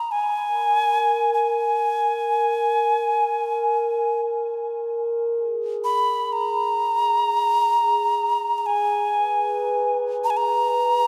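In free time with a haunting, meditative calm, this fragment of a longer world meditation piece sits in G# hirajoshi, with an alto ocarina carrying the melody in a clay-toned, breathy voice with vibrato, a soft attack and an unsteady, up-front presence touched by delay. At 0.4 seconds a glass harmonica joins as texture beneath it, pure and ethereal with a slow, smooth attack. Both parts ring out in a wet cathedral reverb with a 4.8-second decay, and the opening phrase returns from 5.0 seconds.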